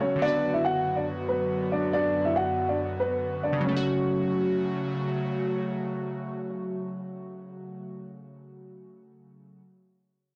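A dark, boxy grand piano carries the melody through low-pass filtering and delay until 4.9 seconds, over glassy, chorused digital keys and an airy, breathy, warbling pad, setting a menacing, tense half-time hip hop mood that moves from Bm/F# to F# minor at 3.6 seconds, with the pad ending at 7.8 seconds and the keys lingering in a blown-out, overdriven mix with moderate digital room reverb.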